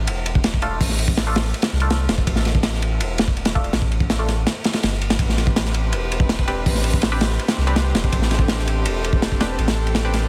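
Atmospheric yet frenetic, this drum and bass excerpt with jungle roots runs at 164 BPM in A minor, moving from Dm to Am11 as a crunchy, saturated breakbeat kit with a tight kick, dark cymbals and a rolled-off top sits up front over a round, deep sub bass. A nasal, band-passed sawtooth chord stab with ring modulation, phaser and dub echo flickers above from 0.6 seconds, and at 5.2 seconds a reedy chamber string section with gut-string tone and vintage 12-bit sampler grit enters with sustained chords. The mix carries a small room ambience, light reverb and a heavily compressed radio sound.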